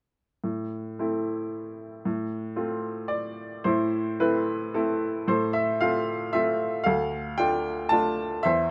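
A bright baby grand piano sits up front in a light reverb, its brilliant, worn tone carrying a short sustain that keeps each note natural. This lyrical classical solo in 3/4 moves with uneven, rubato beats and a moody, cool air, ranging from D2 to A5 as it circles between A minor and F over A before settling onto D minor near 6.9 seconds. It plays from 0.4 to 8.7 seconds, a passage cut from a longer piece.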